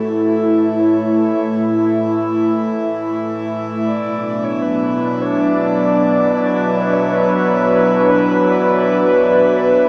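A warbly, detuned tape-like pad sits up front in this serene, reflective ambient passage, holding nostalgic sustained chords that move from A to Bm at 3.9 seconds, while a reedy, close-miked pedal harmonium drone fades in beneath it and a soft, breathy flute-like synth lead with vibrato and shimmer gradually fades in from the background, the recording bathed in huge reverb and a lo-fi cassette, small-speaker sound.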